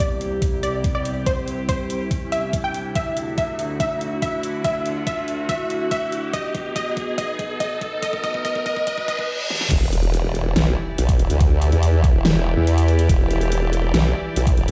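A delayed, detuned unison pluck melody opens this heavy, chaotic half-time dubstep piece at 142 BPM in E minor. It sits over a morphing, warbling wavetable pad with chorus and sidechain pumping, an overdriven knocking kick, and a drum kit with a huge snare and bright hats, as a filter sweep, riser and drum fill build through C, Dadd9 and B chords. A reverse cymbal leads into the drop at 9.7 s, where an electronic impact hits and a compressed, up-front formant-sweep wobble bass with chorus and overdrive arrives on Em7, all sounding as if played on a big sound system in a bare stone room with moderate reverb and a high-pass filter.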